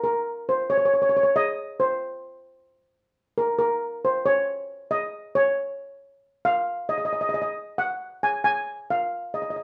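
The rhythm moves in a straight 4/4 at 136 BPM, giving this short calypso fragment a festive, carefree lilt. A lead steel pan carries the whole 9.6 seconds alone, playing in Db major between Bb4 and Ab5 with a tuning of A4 = 439 Hz. Struck with soft rubber sticks, its tone is metallic and shimmering yet mellow, warm and gentle, and it sits up front in the mix. The pan is heard in a boxy small room with a wet studio reverb of 0.7 seconds. The performance has the feel of a band playing live together in one room, caught partway through a longer piece.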